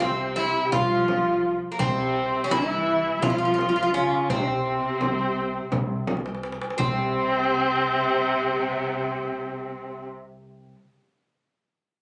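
Captured on a phone in a small room with club reverb and compression, this fragment of a longer Turkish makam ensemble piece moves in a stately, festive 7/8 at 168 BPM. An up-front, metallic, double-strung picked bouzouki carries the melody, while an expressive bowed kamancheh with vibrato and portamento and an intimate, soft-attacked sul tasto cello section trace second lines. Beneath them sits a woody, growly pizzicato upright bass, alongside a clay-shell darbuka and a background frame drum played with soft hands; a drum fill at 6.1 s leads into a new section before the drums stop at 7.1 s.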